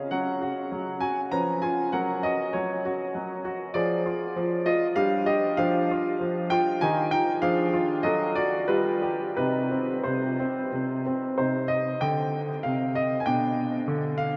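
A rubato pulse in 3/4 at about 97 BPM carries this serious, restless classical-period sonatina excerpt, cut from a longer piece and settling into C minor from 3.8 s after opening on a Gb5 chord. A clear grand piano plays alone throughout, open and up front with long sustain, ranging from B2 to Bb5 and drifting through diminished and seventh harmonies to a Cm arrival at 9.4 s, with a new section starting at 11.4 s and turning to G/B at 13.3 s. A huge, wet reverb with a 9.2-second tail places the instrument in a vast, echoing space.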